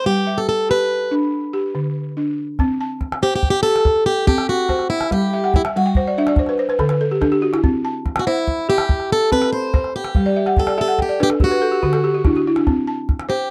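This short excerpt of West African traditional string and xylophone music has a hypnotic, joyful mood in a straight 12/8 metre. A boxy, picked acoustic guitar with a swing-style touch carries the melody over buzzing, woody balafon arpeggios struck with soft rubber mallets, and a deep calabash enters at 2.6 seconds. The balafon breaks into fills at 5.3 and 10.3 seconds, and the dry, close 1970s-style studio sound keeps all three parts up front.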